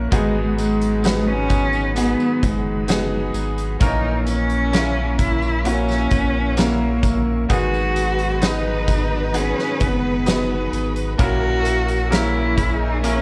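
Pop ballad fragment full of longing, where an expressive bowed cello with vibrato and portamento carries the melody over a brilliant grand piano with audible action noise, a round sine sub bass, a huge arena drum kit with a fat snare and punchy kick, a jingly, very quiet tambourine, a clean twelve-string electric guitar with subtle chorus picking arpeggios, and a soft, flute-like tonewheel organ through a slow rotary speaker, with a close studio violin section joining at 7.5 seconds, all coloured by worn, warbling cassette tape and light small-room reverb.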